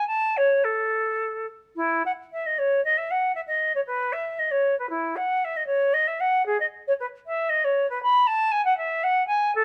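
A silver concert flute opens alone at 0.0 seconds, its pure, metallic tone carrying a gentle vibrato and clearly tongued notes. This short excerpt from a longer baroque-style classical fantasia for unaccompanied flute moves in 3/4 at roughly 104-119 BPM, with a rubato feel that lets the line flow freely. The mood is radiant and flowing, set in E major, and the flute ranges from E4 up to B5. Its sound sits up front yet has a slightly distant quality, framed by light reverb. After a brief opening phrase, the same material returns at 1.7 seconds and continues until the flute stops at 9.6 seconds.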